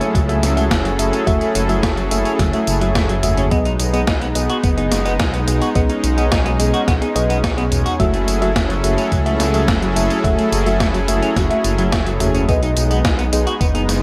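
A moody, driving synthwave excerpt at 107 BPM in F# dorian opens with smooth, evolving supersaw chords under sidechain pumping, mellow FM electric piano stabs with a round, tape-worn chorus and delay, a clean picked guitar riff drifting in the background through lush chorus and delay, gated 80s drum-machine hi-hats, snare, tambourine and toms, and a barely audible downlifter that ends by 3.5 seconds. A deep, rumbling detuned saw bass sits up front with its own sidechain pumping, joined by a thumpy electronic kick. The band cycles between F#m7 and B6 under light digital ambience.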